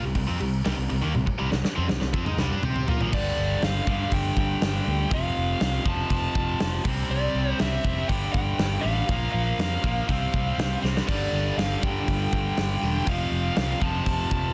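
This menacing, driving hard rock passage opens on a tight, bright, distorted guitar riff, joined by a second overdriven stack guitar also playing a riff from further back and a round, punchy fingered bass, with the big acoustic drum kit arriving moments later. The kit sounds dark and smooth in a large room, its punchy kick and medium-tuned snare sitting up front alongside the distorted rhythm guitar, and a drum fill carries the opening bars toward the next section. At 3.1 seconds a dark, overdriven lead guitar enters with a melody in a high register, while the background stack guitar drops out. The harmony moves through power chords on C, G and B-flat along with F and C chords, and another drum fill arrives at 10.8 seconds just before the stack guitar rejoins the riff at 11.1 seconds. Light reverb and studio ambience surround a dense, heavily limited modern master, and the clip is cut from a longer piece.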